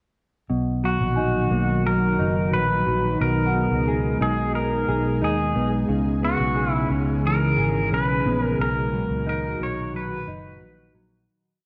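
Dream pop at 89 BPM in B major, blissful and dreamy, where an ethereal, airy pad holds sustained chords, a mellow, clean electric guitar rolls fingerpicked arpeggios through chorus and delay, a dark, foam-muted fingered bass holds a round, sustained line, an up-front, twangy pedal steel sings a slide melody with volume swells and delay, and a delicate, bell-like celesta scatters soft notes in the background from 1.2 to 4.5 seconds, all through moderate plate reverb and worn, warbling cassette tape before the fade-out from 8.6 seconds.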